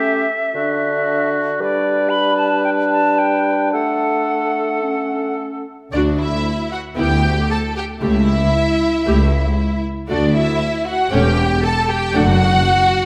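A moderate scoring-stage reverb gives this short extract from a quick classical-period movement for symphony orchestra a polished, spacious glow, its graceful and cheerful character moving at 116 BPM in 4/4 with a rubato feel in D major. Through the opening section a woodwind group carries the music alone: a bright, pure silver concert flute sits up front on a second line, joined by a clear oboe with light vibrato and a mellow, present clarinet, while a dark bassoon supplies accompaniment beneath them. At 5.9 seconds the winds give way to the string sections, with the violins taking the melody in a lush, expressive voice coloured by vibrato and portamento, and a second violin line sounding focused and close. Smooth, even violas fill in the accompaniment, while a warm cello section with a smooth top and a rich chamber double bass section share the bass. The harmony moves from A7 through D and G in the opening, then the string passage travels through Em7/D and A7/C# before settling on D/F#.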